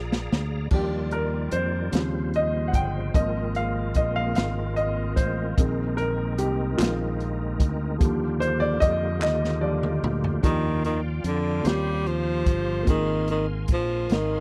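A slow, reverent gospel passage in 6/8 at 49 BPM and Eb major opens on a Bb7 chord, with a drum fill beneath a brief, very quiet line from a dark, clean electric guitar that is gone by 0.5 seconds. The woody upright piano then takes a solo from 0.7 seconds, moving through rich chords such as Ebmaj9, Eb13, Ab69 and Bb9sus4. The piano is supported by reedy, sustained tonewheel organ chords with a fast rotary speaker and chorus vibrato, and by a punchy fingered electric bass sitting up front. The swinging big-band drum kit has an airy, polished sound, with a punchy kick, a medium-tuned snare, hi-hat, crash and toms. Hollow group handclaps join briefly in the middle, and after a second drum fill a breathy tenor saxophone takes the melody at 10.4 seconds, close-miked, with scooped, jazz-style notes. The uplifting, dry, close mix has the feel of a 1970s studio recording, and the clip is cut from a longer piece.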